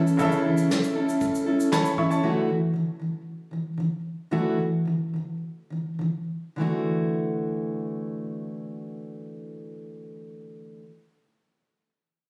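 Carefree and easy-going, this short acoustic pop excerpt in D major moves at a relaxed 100-118 BPM in a straight 4/4, with a fingerpicked steel-string acoustic guitar, full-bodied and up front, carrying the accompaniment through to 10.9 seconds. A bright, polished grand piano and a vintage brush drum kit with a punchy kick, medium-tuned snare and shaker sound only at the opening, the piano adding a brief fill before both drop out at around 2.2 seconds. From there the guitar continues alone as the tempo slows, the harmony moving from A/C# to Dsus2 and settling on Dadd9, all heard with a light reverb and the intimate sound of a phone recording in the room.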